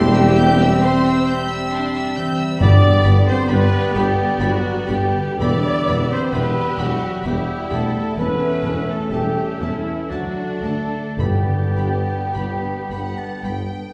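Moving in a flexible, rubato 3/4 at around 51-68 BPM, this slow, lyrical romantic movement for symphony orchestra in G major has a lush violin section singing the high melody. A second violin line, a mellow flute ensemble, a clear oboe and a bright clarinet weave the inner lines, while a bassoon and an intense viola section accompany, a French horn section holds mellow sustained chords and a concert harp rings out arpeggios. A vintage-toned tuba, a double bass section and a very quiet cello section carry the bass, round timpani strokes enter at 2.6 s and again at 11.2 s, and a recital-hall reverb places the whole orchestra a little further back in the room.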